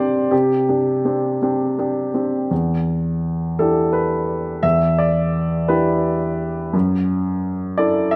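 Neoclassical minimalist piano in E minor at 56 BPM in a loose, rubato 6/8, this intimate and wistful passage cut from a longer piece features a solo baby grand piano, open and up front with long sustain, moving from Csus2 to Em7 at 2.5 seconds and Dadd9/F# at 6.7 seconds within a moderate recital hall reverb and a dark, warm production.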